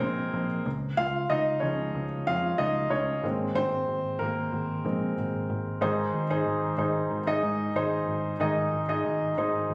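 Captured on a phone in the room with light reverb, this hopeful, uplifting piano-driven pop excerpt at 93 BPM in a straight 4/4 features an intimate, woody upright piano, up front with audible action noise, taking a solo passage through the first 5.8 seconds over chords moving from Bbsus2 to Db and Abadd9 before settling on Ab, while a dark, round, foam-muted electric bass with a punchy amped tone holds down the low end throughout.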